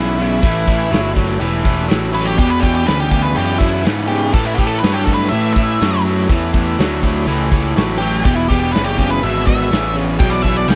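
Raunchy and gritty, this short cut from a longer blues rock power trio piece leans into southern rock swagger in a straight 4/4. A dark, fuzzy octave-fuzz lead guitar takes a picked solo across the whole passage, riding over chords moving between A7 and E7. Beneath it, a bright, double-tracked garage guitar drives a low overdriven riff up front, while a fuzzed, amped bass holds down the bottom. The huge arena drum kit comes in at 0.2 seconds with a punchy kick, a medium-tuned snare and hi-hat, sounding natural and roomy. Far back in the mix, a thick tonewheel organ sustains chords through a slow rotary speaker, adding a faint overdriven haze to the dry, close 1970s-style studio sound.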